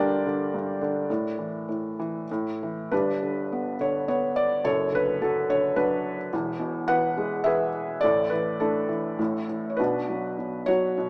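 A small-speaker sound set in a moderate recital hall reverb frames this short cut from a longer lyrical classical piece for solo piano, sunny and warm in mood. A felt-muted upright piano plays alone from 0.0 to 11.1 s, soft, mellow and intimate, sitting up front with a natural tone across a range from E1 to G5. In 3/4 with a rubato feel around 93-110 BPM, it opens on Gm7 and Asus4, then from 2.9 s moves through G, Bm9/F#, E and Asus4 before settling on Bm.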